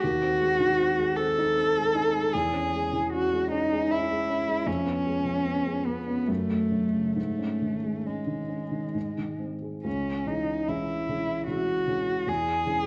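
A bowed cello and a baby grand piano begin together in this elegiac, solemn romantic excerpt, unfolding in a flexible, rubato three-beat lilt. The dark, close cello carries the melody up front with vibrato, portamento and expressive phrasing, while the mellow, intimate piano accompanies from beneath, its action noise audible. A moderate recital-hall reverb surrounds the duo, and worn old cassette tape lends a warbly pitch drift, with the music moving into a new section at 9.9 seconds.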